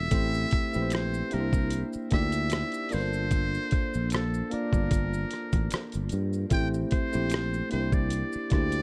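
A breathy, buzzy metal-muted trumpet carries a jazz-style solo line with light vibrato over a bell-like electric piano bathed in lush chorus, a growly fretless bass and a gritty, compressed sampler-style drum kit with thumpy kick, hi-hat and rim click, while maracas and finger snaps sit in the background of this introspective, late-night R&B and neo-soul excerpt that moves through Am7, C9 and Gm11 in a dark, small-room mix.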